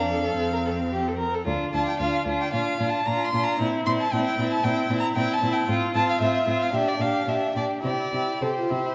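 Graceful and lively, this rubato passage from a classical-period string quartet, cut from a longer piece, sets a rich, smooth first violin with light vibrato up front on the melody alongside an expressive second violin with vibrato and portamento on the second line, while a soft-attacked viola and a warm cello, both with vibrato and portamento, sit more distant beneath in accompaniment and bass, all bowed by single players in a wet recital hall.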